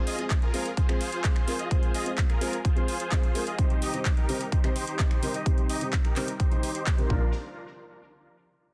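Uplifting and triumphant, this festival progressive house fragment drives at 128 BPM in a straight 4/4, moving from F minor to C minor before touching B-flat. A huge, thick supersaw carries the riff with a detuned, vibrato-tinged edge, colored by cassette tape grit, tape echo, a low-pass filter and a filter sweep across the whole passage. Beneath it, a felt-muted upright piano adds soft, boxy, intimate accompaniment with short sustain, also pumping with the sidechain and trailed by tape echo. A punchy electronic kick sits up front, while a big-room drum kit supplies finger snaps, handclaps and metallic hi-hats with a small-room character. A lush, saturated detuned saw bass with chorus arrives only at 7.1 s on a low B-flat, tucked into the background, all wrapped in light digital ambience and a dense, heavily limited modern master.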